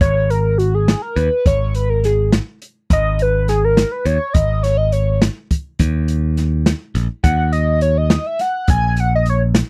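Driving along in a straight 5/8, this brooding progressive instrumental, cut from a longer piece, sets a hollow, woody square-wave synth lead with chorus and vibrato over a growly, bright picked electric bass and a dark, smooth acoustic jazz kit with a boomy kick, all played up front in a dry, close 1970s-style studio sound across roughly 9.7 seconds.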